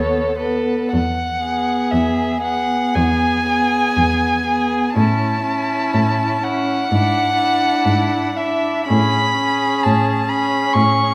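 Heard through a reverberant recital hall, this brief fragment of a slow, tender romantic movement for string quartet in E major drifts in a rubato 4/4 at 51-66 BPM, with all four players con sordino: a veiled, vibrato-rich first violin sings the melody up front, a distant second violin traces a softer line beneath it, a viola glides with soft-edged portamento through the accompaniment, and a dark cello with light vibrato, also sliding between notes, anchors the bass under chords moving from B7/D# to E, A, E7/G# and Amaj7.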